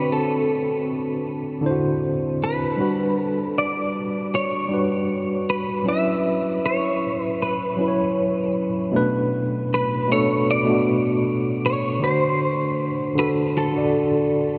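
R&B in B minor at 78 BPM, a late-night, moody fragment cut from a longer piece, where a worn, slightly out-of-tune tine electric piano, lightly overdriven with medium tremolo and up front through a combo amp, carries the accompaniment beneath a clean, compressed, picked electric guitar melody dressed in ensemble chorus and diffuse ambient delay, the dreamy mix soaked in huge ambient reverb as the harmony moves from D7 through Gmaj7 and F#7sus4 into Bm7 at 8.9 s.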